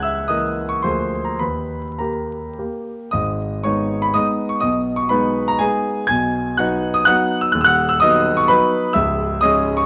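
Close, detailed microphones catch a warm, natural, up-front grand piano inside a moderate concert hall reverb, with vinyl crackle lending the sound an aged patina. This capricious, nostalgic romantic dance in triple time moves with dotted rhythms and free rubato, the solo piano spanning the instrument's deep bass to its high treble. Cut from a longer piece, the passage opens on unsettled diminished and seventh harmonies before turning at 3.1 seconds toward a minor-key phrase that drifts through major colours.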